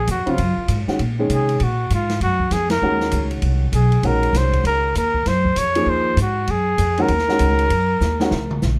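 A dark, softly attacked trumpet with light vibrato and scooped notes carries the melody over woody, thumpy pizzicato upright bass, a present upright piano with long sustain, and an acoustic drum kit with dark cymbals and a boomy kick, in this spiritual, cool modal jazz excerpt in Eb dorian at 196 BPM with a swung feel, a band accent at 2.7 seconds and a drum fill from 8.0 seconds, all captured closely and dry.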